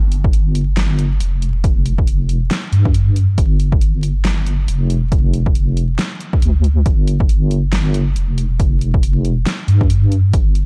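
Heavy and meditative, this short deep dubstep excerpt at 138 BPM in a swung half-time 4/4 sets a deep, chorus-treated wobble bass, sustained and up front between F1 and G2, against a punchy overdriven electronic kick and a house kit of hi-hat and fat overdriven snare, all in a dark, dry production dusted with vinyl crackle.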